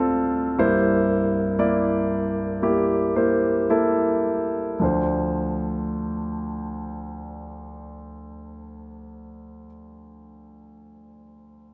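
Emotional and melancholic, this brief pop fragment features a lone grand piano, up front and polished, playing an accompaniment that spans from deep bass notes to the upper middle register. The opening moves from Dm7 to C7 and slows down until a new passage returns to Dm7 at 4.8 seconds. A moderate concert hall reverb gives the piano a spacious, resonant setting.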